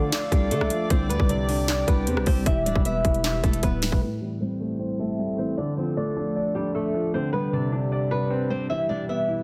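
A dense, heavily limited modern master with light reverb and digital ambience frames this hard-hitting, melancholic trap excerpt in A minor, set at 154 BPM in 4/4 with a half-time feel. An acoustic flamenco guitar, fingerpicked and shadowy, carries the melody, while a mellow, boxy concert grand piano with deep bass plays accompaniment up front; both are softened by a low-pass filter. Beneath them, a moody analog pad holds sustained chords built from square, sawtooth and triangle tones with a sub octave, slow attack, long release and chorus. An electronic trap kit sits up front with a hard-clipped kick, sharp snare, metallic hi-hats, handclaps and rim clicks, alongside a growling, buzzy 808-style bass with fast attack and decaying notes. After a drum fill, both the kit and the bass stop at 4.0 s, and a filter sweep runs through to 9.4 s as the harmony moves from Am7 through Dm and Csus2 to Em.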